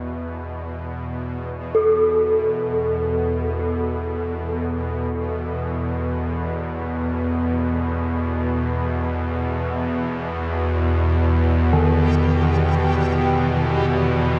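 A cavernous, worn cassette sound with warbling pitch drift and a huge wet reverb frames this unsettling dark ambient drone excerpt in E harmonic minor and free time, where a nasal, string-like bowed drone fades in up front from 0.0 s, a bronze gamelan-type metallophone joins with shimmering, ringing arpeggios through tape echo at 1.7 s, and a reversed, dreamy swelling texture swells on G4 at 12.0 s as the harmony moves from E5 to Emmaj7.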